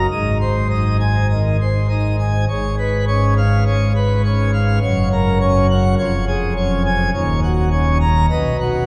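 Majestic and brilliant, this brief passage from a classical organ toccata sets a solo pipe organ in a full plenum registration, its bright mixtures and romantic voicing spanning from D#1 up to A#5. The chords move from Ab through C#7/G#, F#, C#/E#, and D#m7 before settling on B at 8.3 seconds. A wet cathedral reverb with a 5.3-second decay surrounds the organ, which is heard from further back in the room.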